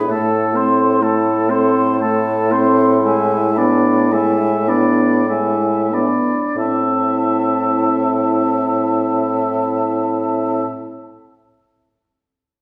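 Heard from further back in a reverberant recital hall, this brief, solemn and elegiac passage of romantic classical music for wind quintet moves in a rubato three-four, slowing through its first 6.6 seconds as an airy, hollow concert flute with vibrato carries the melody above a warm, distant oboe second line, a smooth, very quiet clarinet and a mellow, vintage-toned French horn in the accompaniment, and a clear, up-front bassoon holding the bass.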